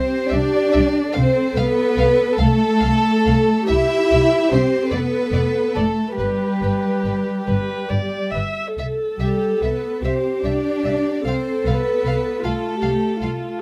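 A tender, lyrical classical movement for chamber string orchestra opens with a violin second line, a viola accompaniment and a dark, woody cello bass, all bowed sul tasto with vibrato, in C major at 48 BPM in a rubato 6/8 tuned to A4 = 439 Hz. At 0.3 s a soft-attacked violin melody with light vibrato enters, mixed softly among the other strings, alongside a dark double bass section placed up front with a smooth top. Close, detailed microphones and light reverb give this cut from a longer piece an intimate, warm presence.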